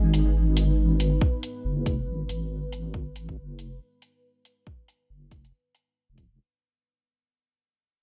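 A half-time 4/4 groove at 139 BPM with a 16th-note swing drives this cavernous, heavy fragment of deep dubstep in G# minor, its metallic, low-pass-filtered hi-hats ticking from the start and a tape-warm, layered kick entering up front at 1.2 seconds. Beneath them, an up-front wobble bass blends sine and triangle tones into a dark, compressed, chorused wobble, while a moody, detuned sawtooth pad with a sub octave warbles in slow-blooming sustained chords, soaked in its own reverb. The whole short cut sits in a shadowy digital ambience and fades out across its 6.4 seconds.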